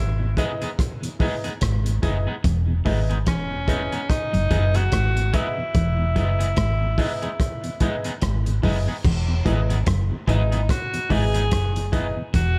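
Sunny and laid-back, this short roots reggae excerpt sits on a swung groove from a crunchy, gritty breakbeat kit with a tight kick, dark cymbals and rim clicks, up front beside a woody, round fretless bass bathed in lush chorus. A clear, vintage-toned tenor saxophone carries the melody with scooped notes and tape echo, while a mellow tonewheel organ with slow rotary speaker and light overdrive hums in the background, a twangy, slightly broken-up picked guitar adds accompaniment with subtle chorus, and an intimate grand piano with audible action noise plays stabs. From 2.4 seconds a second, very quiet picked guitar adds a low riff, with the piece opening on an Emaj7 chord in a studio reverb.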